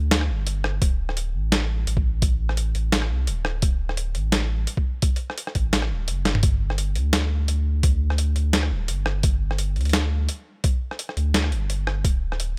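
A deep, thick saturated sub bass with a triangle-like, sustained tone anchors this spacious, heavy half-time drum and bass excerpt at 171 BPM, joined up front by a thumpy, pitched-down electronic kick and a compressed, gritty boom bap sampler-style kit of hi-hat, rim click, medium-tuned snare and toms swinging lightly on the 16ths, all set in a digital ambience where the kick drops out from 6.1 to 6.4 seconds around a drum fill at 6.3 seconds before the groove repeats.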